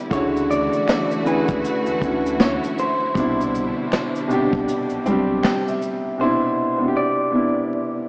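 Lo-fi hip hop at 79 BPM with a swung 16th feel, this dreamy, nostalgic excerpt drifts over a Dmaj9 chord that shifts to Cmaj9 at 3.2 seconds. An intimate, woody upright piano carries the accompaniment up front, its action noise audible, while a lush, distant studio string section holds bowed chords with vibrato until 6.2 seconds. An electric guitar through a small old amp picks a compressed, slightly broken-up melody trailed by tape echo. Underneath, a thick saturated sub bass sits low. A vintage brush drum kit with a punchy kick, dark rolled-off top and medium-tuned snare plays hi-hat, kick, shaker and snare, joined by a barely audible finger snap. The kick drops out at 4.7 seconds, and the piano plays a fill from 5.1 seconds. The mix is soaked in plate reverb with vinyl crackle and a small-speaker sound.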